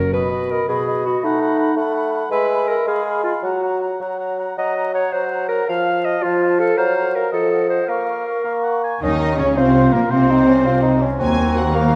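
Classical in a restless, stormy mood, this short excerpt cut from a longer piece moves in a rubato 6/8 at about 109 dotted-quarter beats per minute, starting in B major before turning to Bb minor from 4.6 s. A woodwind group carries the opening: a clear clarinet sits up front on a second line beside a mellow bassoon with light vibrato in accompaniment, while a warm oboe with a soft attack plays more softly and an airy, hollow small flute group lies in the background. At 9.0 s the strings and horns arrive together, with a lush studio violin section taking the melody and a distant symphonic violin section adding an expressive, portamento second line. Beneath them a very quiet, intense viola section, a focused cello section in the background and a smooth double bass section fill out the harmony and bass, and a very quiet French horn section holds sustained chords until 11.6 s. The harmony darkens through chords such as Gbmaj7 and F7b9 before settling on Ebm at the close. 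The sound is bathed in the reverb of a recital hall, with a layer of vinyl crackle across the recording.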